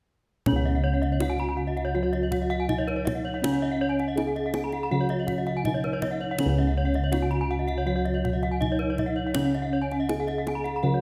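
Ceremonial and brilliant, this short excerpt of Balinese gamelan moves at 81 BPM in a straight 4/4, centred on Db in slendro tuning. From about 0.5 seconds, a bronze metallophone carries the melody with padded disc mallets, its tone mellow and soft, with paired tuning that produces shimmering beats in a boxy small-room sound. Beneath it, a second metallophone struck with a wooden mallet plays a ringing, mid-forward accompaniment in the low register, while bossed gongs hold the bass with a round, beating tone placed up front. Two higher metallophones played with horn mallets spin bright, airy arpeggios, their paired tuning adding more shimmer above the ensemble. A kendang drives the percussion with tight, close and dry hard-handed strokes, and a moderate scoring-stage reverb gives the metallic bronze ring a sense of space through to around 11 seconds.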